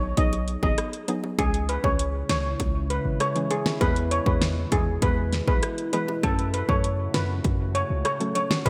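Dancehall with a hypnotic, sultry mood, heard in a short section cut from a longer piece and set in a lush hall reverb with a bright 1980s-style digital sheen. A soft, round pluck with chorus and sidechain pumping opens alongside a deep, boomy 808-style bass, and by 0.2 seconds a punchy pop drum kit joins with a fat snare, metallic hats, rim clicks and gated reverb, pushed up front. A shimmering steel pan carries the melody, struck with hard rubber sticks and trailed by digital delay, while very quiet, low-tuned bongos sit close and dry beneath it. At 2.2 seconds a dark, moody ambient pad arrives with slow-attack sustained chords, its chorus and built-in reverb giving it depth as it pumps with the sidechain. The harmony moves through B6, C#m, E and F#m.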